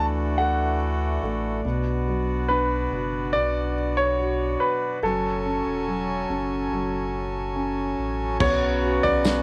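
A clear, polished baby grand piano carries the melody at the front of this tender, emotional pop ballad excerpt, its notes trailed by a slapback echo. Beneath it, a felt-muted upright piano adds soft, intimate accompaniment with audible action noise, while a reedy, breathing pedal harmonium sits up front with sustained chords and a round, sine-like sub bass anchors the low end. The harmony moves through Dadd9, Bm and F#madd9 in a straight 4/4. At 8.4 seconds a loose indie drum kit joins with a tight kick, medium-tuned snare, toms and dark crash cymbals, alongside a distant, roomy French horn section playing a second line in the background. A jingly tambourine slips in at 9.2 seconds just before the cut, all set in light reverb and studio ambience.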